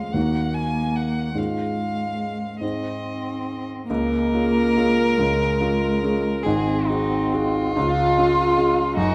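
From the opening instant, a muted violin sings a veiled, lyrical melody with vibrato, soft attacks and gentle portamento, while a con sordino cello shades a smooth second line beneath it and a dark concert grand piano supplies mellow, intimate accompaniment with deep bass and audible action noise. This slow romantic piano-trio movement in Db major sways in 6/8 at 47 BPM with uneven, rubato beats, tuned to A4 = 443 Hz, moving from Ebm through Ab to a settled Db as it passes into a new section at 3.9 s and touches Ab7 before coming home. The close, up-front violin and the vintage-toned piano sit in a wet stone room reverb, lending this warm fragment of a longer piece a quietly glowing space.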